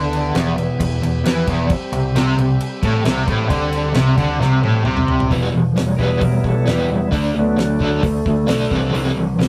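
Driving and gritty, this classic rock excerpt moves at 133 BPM in E minor, with a picked, double-tracked distorted electric guitar riff opening alongside a warm, hollow-body overdriven guitar riff with tremolo, a growling bass and a damped 70s kit with a fat snare and tight kick. A second semi-hollow guitar joins in the background at 1.9 seconds, the distorted guitar drops out after a drum fill at 5.3 seconds, and a reedy tonewheel organ with key click and slow rotary speaker takes a solo over Em, D and Cadd9. The sound is a rough rehearsal-room recording with saturation and a short, wet booth ambience.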